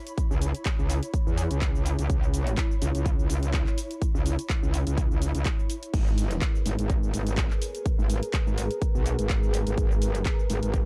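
A punchy, tape-warm electronic kick drives this bouncy, aggressive bass house excerpt at 125 BPM in 4/4 with a light 16th-note swing, alongside a house drum kit of crash, handclaps, hi-hat and shaker that sounds re-recorded in a small room. Up front, a metallic, distorted FM wobble bass growls low with chorus, overdrive and sidechain pumping, while an ethereal, airy pad drifts in the background with ensemble chorus, built-in reverb and its own pumping over C#m7. At 5.9 s the harmony shifts to G#madd9 and a moody, nasal analog pad with a sub octave enters behind, all set in a dark digital ambience.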